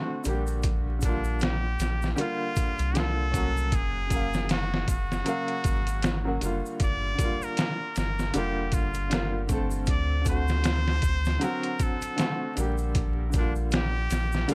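A slow trip hop groove at 78 BPM in 4/4 swings its sixteenths, and a sampler-style drum kit sits up front with a thumpy, pitched-down kick, a medium-tuned snare and hi-hat, all compressed and muffled. Beneath it a deep, round sub bass with a fast attack holds long notes between F1 and D2, while an egg shaker and group handclap stay in the background from 0.2 seconds. A bright upright piano plays the accompaniment in G minor from the start, woody and intimate with audible action noise and a tremolo effect, moving through D7, Bb6, F#maj7 and Gm7. Over this a muted trumpet with a straight mute carries a jazz-style solo melody between D4 and D5, nasal and breathy with vibrato, trailed by dub echo. The mood is melancholic and smoky, and the sound is dry and gritty, with a small room reverb and vinyl crackle, in this 14.5-second excerpt cut from a longer piece.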